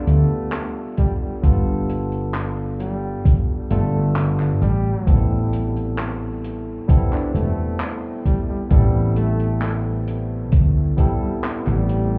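Nostalgic and woozy, this short vaporwave excerpt in A minor drifts at 66 BPM, moving from a G9 chord to Am9 at 4.6 seconds. A close-miked flugelhorn with vibrato carries the melody through vintage 12-bit sampler grit and tape echo, over a barky tine electric piano with subtle chorus and a round, hollow-body fretless bass sitting up front. A thumpy sampler-style kick enters at 1.0 seconds, pushing above a dark, rolled-off cocktail kit of handclaps and hi-hat, and the whole mix sounds muffled through a wall, like a club heard on cassette tape.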